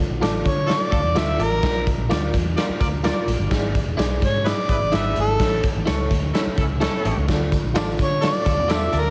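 A reedy electric piano with fast tremolo and a round, foam-muted electric bass open this driving, passionate excerpt of uptempo 1960s-style soul at 127 BPM in D harmonic minor, moving through Dm, Bb, E7 and A. A gritty, saturated garage drum kit with a punchy kick sits up front beside an amplified, overdriven harmonica lead full of tongue slaps and scooped notes, while twangy clean guitar stabs with subtle chorus sit in the background and a smooth jazz-style horn section with light vibrato adds a warm second line. Tambourine and handclaps join at 7.5 seconds, and the whole is framed by light reverb and a heavily compressed radio sound.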